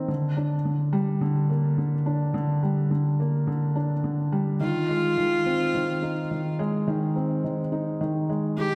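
Melancholic and hypnotic, this short electronica fragment, cut from a longer piece, moves at 106 BPM in a straight 4/4. A felt-muted upright piano carries a repeating riff from the start, its boxy, intimate tone sitting up front with the mechanical action noise clearly audible and a digital delay trailing its notes. At 4.6 seconds a solo viola enters with the melody, bowed close and up front with a light vibrato and an earthy, airy bow sound. The harmony rests on Dsus4 before moving to Ab6 as the viola arrives. A wet recital hall reverb surrounds both instruments, lending the small, close sounds a sense of space.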